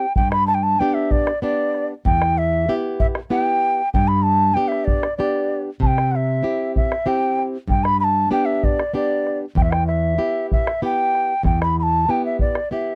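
A straight three-beat lilt carries this short, festive yet wistful Andean folk passage, with a deep, dark bombo entering at 0.2 seconds and a fingerpicked acoustic flamenco guitar tracing chords that move among G, E minor and C. Over them, a large wooden quena sings the melody with an airy, mellow tone, tongued notes, vibrato and rolled-off highs. All three sit up front in a dry, close studio sound with a 1970s character.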